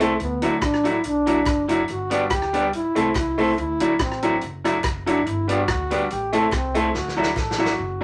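Ska with an upbeat, bouncy swing, cut from a longer piece and carried by a breathy, intimate trombone solo with light vibrato over chords that move from Dadd9 through G and Am. Up front, a clear, smooth upright piano plays stabs while a twangy, slightly broken-up electric guitar through a small old amp accompanies, a woody pizzicato upright bass holds the low end, and a very quiet, hollow group handclap joins at 0.6 seconds. A vintage drum kit with a tight kick and medium-tuned snare plays a fill from 6.9 seconds, and the band sits in a small room with moderate reverb.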